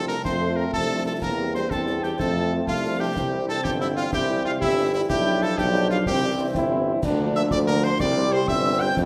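A festive, spirited military-style march for wind band opens at once with most of the brass and woodwind line-up: a clear cornet carries the melody with light vibrato and a soft attack, while an airy piccolo, tongued and with vibrato, plays a second line high above it. A euphonium with light vibrato and a punchy edge shapes another second line from the background, and a present tuba sits up front on the bass. Very quiet mellow trombones hold sustained chords, and from 0.1 seconds a French horn section adds smooth-topped, very quiet accompaniment alongside concert snare drum, bass drum and clash cymbals, whose dark cymbals sound close and dry in the background. The tempo is a brisk 124 BPM in 6/8, with a straight feel and a classical-style polish. The harmony moves from F through C7 to C, visiting G7 and Bb before settling back on C by 8.0 seconds. A wet recital hall reverb surrounds the ensemble in this brief cut from a longer piece.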